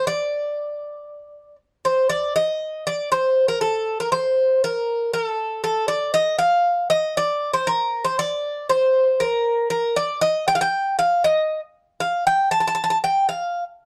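A bright, metallic Greek bouzouki, picked on doubled and partly octave-doubled strings and placed up front, plays alone from 0.0 to 13.6 seconds in this tense, driving Greek folk fragment at 118 BPM in D Phrygian, set in a moderate studio reverb within a dark production.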